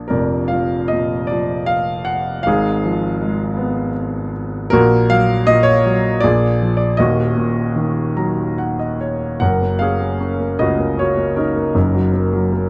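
In a flexible, rubato 3/4 that drifts between 69 and 82 BPM, this short excerpt of lyrical classical solo piano unfolds in a reflective, wistful mood. A warm, up-front grand piano, heard through close, detailed microphones with light reverb, spans from deep Eb1 to Bb5, moving through Eb minor harmonies before a brief fill at 7.7 s. That fill leads into a new passage at 9.4 s that shifts to F# major.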